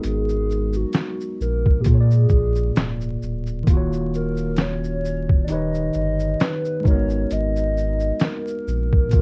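A gritty, pitched-down boom bap drum kit with a thumpy kick, snare, hi-hat and shaker sits up front in this nostalgic, melancholic lo-fi hip hop fragment, joined by a round sine sub bass, a worn, slightly out-of-tune tine electric piano through a low-pass filter, and a hollow, woody clarinet-like synth lead with chorus and vibrato entering at 0.1 seconds, the swung groove wrapped in light reverb, vinyl crackle and a dark production.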